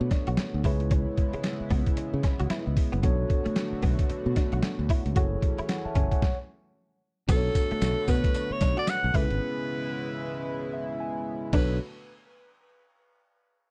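Gritty, pitched-down sampler drums with a thumpy kick drive this bouncy, slick new jack swing excerpt alongside an up-front fingered bass, mellow tine electric piano with subtle chorus, a shimmering retro pulse-width pad, and a picked, clean direct guitar riff, before a stop at 6.2 s gives way at 7.3 s to a bright alto saxophone melody with light vibrato, scooped notes and tape echo, and a tine piano fill at 10.5 s, all captured in a dry, close 1970s-style studio sound.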